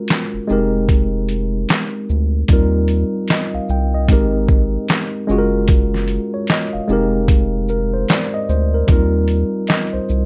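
Cosy and mellow, this lo-fi hip hop excerpt in 4/4 swings gently on the sixteenths as a worn, slightly out-of-tune tine electric piano, softened by a low-pass filter, moves through chords such as Fm11, Eb69, Abmaj7 and Gbmaj7. A gritty, compressed, pitched-down trip hop drum kit joins at 0.1 seconds with a thumpy kick, medium-tuned snare, handclaps, hi-hat and shaker, and a round, deep, nasal analog bass enters at 0.3 seconds. The parts sit up front in a light reverb.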